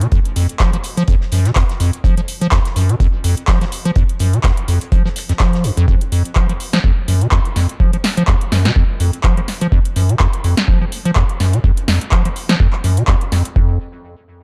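A squelchy, hollow square-wave acid bass leads this trippy, gritty acid house excerpt at 125 BPM in 4/4, riffing between F2 and F3 with a resonant filter sweep, fast attack and decaying notes. Tube saturation, subtle chorus, tape echo and sidechain pumping thicken the bass, which sits up front beside a deep, overdriven analog kick that was re-recorded in a small room. An electro analog drum machine adds a punchy snare, handclaps and metallic hi-hats with a short room on them and a tape-softened tone, all re-recorded in a large room, and the 16th notes carry a 55% swing. Very quietly underneath, a damped 70s acoustic kit contributes a dry, fat snare and hi-hat with a rolled-off top from 0.1 to 5.8 s before dropping out. The production is dark and warm with little reverb, keeping the groove close and heavy.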